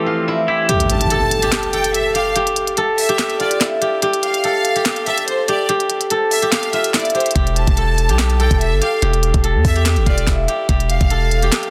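Dark and hard-hitting, this excerpt of half-time trap hip hop moves at 144 BPM in E phrygian. A silvery, fingerpicked steel-string zither carries the melody up front throughout, its ringing tone softened by a low-pass filter and trailed by tape echo. For the opening moment a twangy, clean electric guitar with lush chorus and a very quiet, ethereal pad sound out an Fmaj7/E chord before stopping at 0.7 seconds. There the trap kit enters with crisp hats, a sharp snare and handclaps, while an electronic impact and riser hit, and a biting, intense violin section with light vibrato follows as a second line, carrying its own tape echo. The knocking kick stays muted until 7.4 seconds, when it drops in alongside a deep, sine-like 808 bass on an E minor chord. The dense, heavily limited master sits in a digital ambience, keeping the drums, zither and bass pressed forward.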